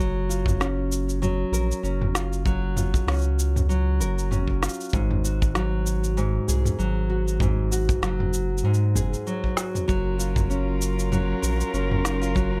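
A fingerpicked nylon-string guitar leads this folktronica excerpt, its up-front arpeggios carrying audible finger squeak and a touch of digital delay over a round, deep analog bass at a relaxed 97 BPM with a gentle 16th-note swing. An organic electronic kit of cabasa, toms and a woody, tape-warm snare sits beside a punchy acoustic kick from 0.5 seconds, while the harmony moves from Gbmaj7 to Ab7(no3) and back for a delicate mood. At 9.9 seconds a veiled, con sordino string quartet adds close, dark sustained chords with vibrato, all in a dry, intimate sound.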